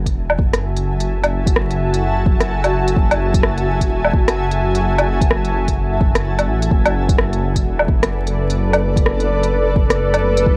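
A blurred, granular cloud pad with 12-bit sampler grit and sidechain pumping holds ghostly F#m9 and Bm7 chords over a dark, rumbling detuned saw bass, a deep electronic kick and an up-front organic electronic kit of smooth hats, rim clicks and woodblock in this melancholic future garage excerpt at 128 BPM with a 16th-note swing, all under light reverb and vinyl crackle.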